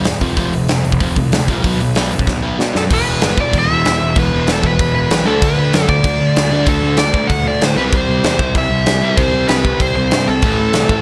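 A dark, smooth lead guitar comes up front with an overdriven melody at 2.8 seconds, near the end of a drum fill that starts at 2.3 seconds, riding over a double-tracked, hollow-bodied semi-hollow guitar riff, a growly, fuzz-toned picked bass and a punchy big-room rock kit with bright cymbals in this rowdy, rebellious punk rock excerpt at 191 BPM, moving from F5, B5, E5 and D5 into C and Am with little reverb.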